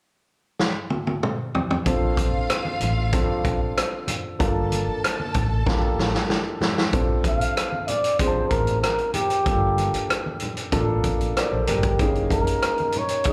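Lush, 1970s-style soul in Bb major at 95 BPM, this excerpt opens with a vintage drum kit fill, its punchy kick and rolled-off top sitting up front. An overdriven, amped electric bass and an intimate grand piano with audible action noise enter around 1.9 seconds, moving between Bbmaj7 and Gm9, and low-tuned congas follow in the background at 2.2 seconds. A distant bowed string section with vibrato and portamento adds a soft second line until 6.6 seconds, and after another drum fill a breathy, whispered flugelhorn takes the solo melody from 7.3 seconds with scooped notes, slapback echo and analog delay, as the harmony turns to Gb6 near the end. The whole performance is heard through a club PA with light reverb, giving it a live-gig feel.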